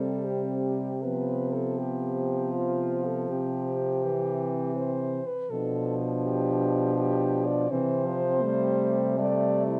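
From the first moment, four French horns sound together in a lyrical, serene classical passage in C major, moving in a gentle 3/4 at 81 BPM with a flexible, rubato feel. The top horn carries the melody between E4 and D5 with a clear tone and light vibrato, while a dark, close-miked horn shapes a second line beneath it. A third horn supplies the accompaniment with a distant, roomy quality, and the lowest horn anchors the bass with a soft attack and a warm character, both of these lower parts sitting up front in the blend. The harmony rests on C, leans toward G7 over C and then G7 over B, and settles back on C at 7.7 seconds. Light reverb surrounds this short passage, which runs to 9.8 seconds and is cut from a longer piece.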